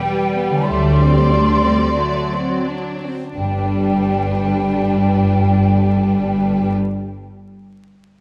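A classical excerpt from a slow romantic movement for symphony orchestra, tender and warm in mood, moving in a flexible rubato that slows through the opening 3.4 seconds. A bowed violin section carries the melody with focused vibrato and a smooth top, while a large flute ensemble adds an airy, tongued second line above it with lifted highs. A second violin section supplies another line lower down, and the viola section fills in a lush, even accompaniment. A mellow concert harp rings out arpeggios in the background across the whole passage. At 0.7 seconds the double basses enter with a close, focused bass, joined by cellos whose soft attack sits behind them. The harmony moves from Em to D9 before resting on G, all set in a moderate scoring-stage reverb with detailed close miking and a touch of vinyl crackle.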